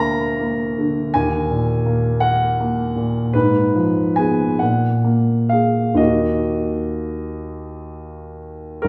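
In a rubato 6/8 that drifts between 40 and 56 BPM in dotted quarters, this mournful, wistful romantic nocturne for solo piano unfolds in Eb minor, a brief fragment of a longer piece. A warm concert grand with deep bass and an open, up-front presence spans Eb1 to Bb5, moving from Bb/D through Ebm, Fdim/Ab and Gbmaj9/Bb before settling back on Ebm at 6.0 seconds. The playing sits in a wet recital-hall reverb with a 1.6-second decay, giving it the lingering air of a church or concert hall.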